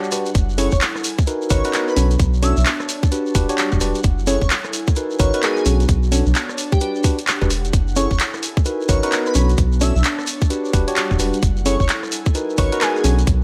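An overdriven, tight electronic kick drum sits up front in this skippy, moody two-step UK garage excerpt, joined by a punchy, tape-toned analog drum machine of congas, handclaps, hi-hat and rim click, a round, deep dub sub bass, clean tine electric piano stabs with tape echo, a breathy, full-bodied pad with chorus and sidechain pumping, a dreamy, mellow lead with vibrato and portamento entering at 0.6 seconds, and a grainy shekere in the background, all over a bed of vinyl crackle and cycling minor-ninth chords.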